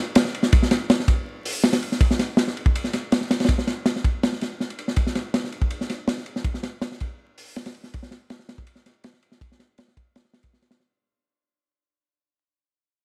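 Raw and atmospheric, this drum and bass excerpt at 162 BPM in straight 4/4 features a crunchy, saturated breakbeat kit, up front and gritty with dark cymbals, a high-tuned snare, a tight kick, hi-hat and ride, all heard from 0.2 seconds under vinyl crackle, little reverb and a rolled-off top as the whole passage fades out.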